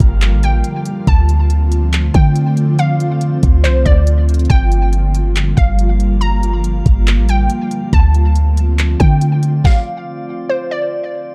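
A half-time hip hop groove from a smooth, up-front electronic drum kit with knocking kick, deep snare, handclaps and hi-hat anchors this spacious, melancholic cloud-rap fragment, where a boomy, clean 808-style bass and an ethereal pad pumping under ensemble chorus and reverb carry the chords while a glassy wavetable pluck traces a mellow, filtered melody through tape echo, a very quiet downlifter sounds until 1.1 s, and a calm texture of drifting glass harmonics hovers in the background, so that when the drums, bass and pad stop near 9.6 s the pluck lingers to 10.9 s and the glassy texture to 11.3 s in a dark, dry mix.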